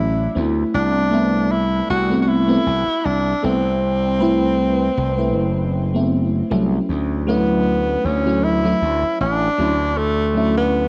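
A lightly swung 78 BPM groove in 4/4 drives this dreamy, faded vaporwave excerpt, where an overdriven, punchy slap bass sits up front beneath a lush, chorused FM electric piano with a soft pad layer and phaser, while a breathy tenor saxophone with vibrato and scooped notes carries the melody through 12-bit sampler grit and tape echo, the whole recording steeped in worn, warbling cassette tape and light small-room reverb.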